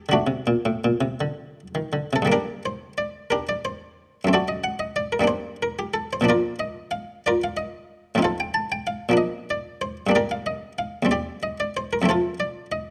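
Closely recorded with light reverb, this introspective, flowing fragment of a baroque-style suite movement in G minor features a solo buff-stop harpsichord, muted and lute-like in the French style, sitting up front in 6/8 at a rubato 53-63 BPM in dotted quarters, its brief opening giving way at 2.3 seconds to a longer passage that wanders through a diminished chord and B-flat before settling on F.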